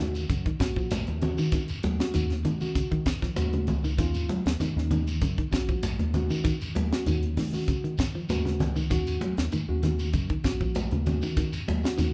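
A lightly swung sixteenth-note groove drives this defiant, funky afrobeat excerpt, built on a dry, high-tuned funk kit placed up front, hard-handed bright congas, and a grainy, distant shekere that joins at 0.2 s. A round, punchy fingered bass anchors a single Ebm7 chord, while a clean picked electric guitar plays arpeggios in the background and a worn, slightly out-of-tune tine electric piano adds accompaniment. The band sounds as if playing live together in a large studio with moderate reverb.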